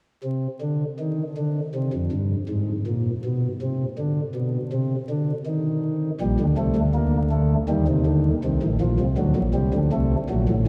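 Driving and serious, this baroque-style four-part fugue for pipe organ moves at a steady 80 BPM in a straight 4/4, cut from a longer piece. A single organ on flute stops carries everything, its soft, chiffy voices sitting up front in a low register between A1 and Bb3, tuned to A4 = 443 Hz. The opening lines unfold before any chord is named, and chords settle in from 6.2 seconds, passing from Gm/Bb to Cm/Eb before landing on D7 at 9.2 seconds. A cathedral reverb with a 5.4-second tail surrounds the organ in a long, wet wash. The dark, warm production carries a layer of vinyl crackle, giving the solemn counterpoint an aged, dusky quality.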